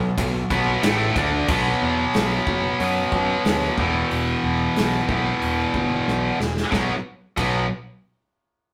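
Driving and heavy, this hard rock cut opens with a very quiet, brassy analog pad sustaining chords for its first 1.5 seconds as two bright, distorted guitars, one high-gain and up front and the other tight, play a riff over a growly picked electric bass and a punchy gated 80s drum kit set in a bright stone room, the drums breaking into a fill at 6.1 seconds, the mix carrying a rough, tube-saturated rehearsal-room sound.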